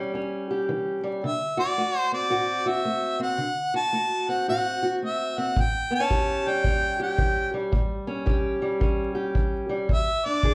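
Rollicking yet laid-back, this short piece of acoustic country blues swings easily, cut from a longer performance. A dark, boxy, fingerpicked parlour steel-string guitar opens alone, up front with a slapback echo, moving from a rootless A7 to D7 at 1.2 seconds. That is when the harmonica enters to carry the melody in a jazz-style solo, its soft attack, light vibrato and scooped notes giving it a warm voice close to the listener. At 5.6 seconds a tight, smooth kick drum with a rolled-off top joins as the harmony returns to A7, and the chords reach E7 near the close. The sound feels like a live club gig heard through the venue's PA, with club reverb and a layer of vinyl crackle.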